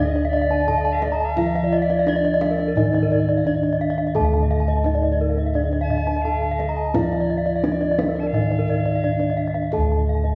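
The bossed gongs stand out most, sitting up front with a round, beating bronze tone struck by padded beaters and carrying the bass in this ceremonial, shimmering Balinese gamelan excerpt, which moves at 86 BPM in a straight 4/4 in D pelog. Above them, a bronze metallophone carries the melody with padded disc mallets, its mellow, soft sound tinged by a boxy small-room character. A lower metallophone plays the accompaniment with a wooden mallet, giving a ringing, metallic edge. Two more metallophones play arpeggios in the same upper range, one airy and the other close-miked, dry and full, both with paired tuning that produces shimmering beats. A tenor recorder adds a second line with a pure, straight tone, soft attack and a touch of chiff, heard at a distance, while the kendang enters at 0.5 seconds with tight, soft-handed strokes in the background. The whole ensemble rings in a reverberant recital hall, and the passage is cut from a longer piece.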